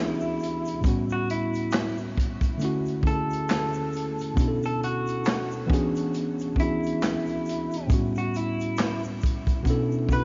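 A slow, swung lo-fi hip hop groove at 68 BPM in 4/4, with a crunchy, saturated breakbeat kit of tight kick, medium-tuned snare, hi-hat and handclaps arriving at 0.4 s up front, just after a very quiet, grainy tube shaker enters at 0.2 s. A worn, slightly out-of-tune tine electric piano carries mellow jazz chords such as E13, A13, Dmaj9 and Bm11, while a slightly broken-up, compressed electric guitar through a small old amp plays a fingered melody with tape echo. The melancholic, hazy excerpt sits in a dreamy mix soaked in huge ambient reverb, with vinyl crackle and a dull, rolled-off top.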